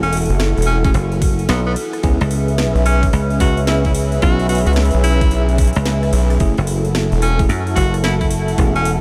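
Glitch hop at 110 BPM in F# minor with a swaggering, funky swing, where a bright, forceful tenor saxophone solo with scooped notes and vintage sampler grit rides over a dark, detuned analog pad pumping with chorus, an up-front thumbed slap bass joined by a saturated, aggressive synth bass from 0.3 seconds, knocking electronic kick and cracking snare with metallic hats, and a worn, slightly out-of-tune electric piano stabbing very quietly from 0.8 seconds, all moving between F#m7 and C#m7 in a light digital ambience.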